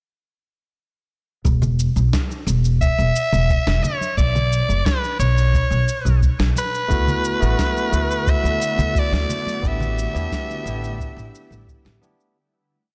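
A dense, heavily limited mix in a small room carries this relaxed, smooth sunset chillout piece in E dorian at 88 BPM, where a woody, thumpy pizzicato upright bass and a deep, tape-warm electronic kick start the groove at 1.4 seconds alongside a gritty sampled shaker and fat snare in a light lounge beat and dry, close congas, before a raspy, edgy soprano saxophone with vibrato spins a free solo melody through digital delay and shimmer reverb from 2.8 seconds, a barky, lightly overdriven tine electric piano adds held rootless chords with syncopated pushes from 6.9 seconds, and a detuned, ethereal pad with chorus and phaser glows in the background as the piece fades out.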